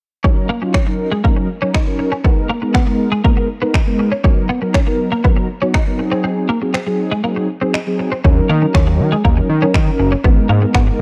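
Dance-pop in Eb minor at 120 BPM, confident and energetic, cut from a longer piece: a punchy analog drum machine with finger snaps and a kick re-recorded in a small room drives up front, while dark, brassy synth brass with chorus, vibrato, a filter sweep and sidechain pumping carries the chords from Ebm7 through Abmadd9, Bmaj7 and Ab7. A bright, twangy twelve-string electric guitar plays a clean, compressed picked riff with ensemble chorus, and after a break from 6.2 to 8.2 seconds a fat, detuned sawtooth bass enters at 8.2 seconds with its own sidechain pumping. The whole mix sits in light digital ambience and carries the worn, warbling pitch drift of old cassette tape.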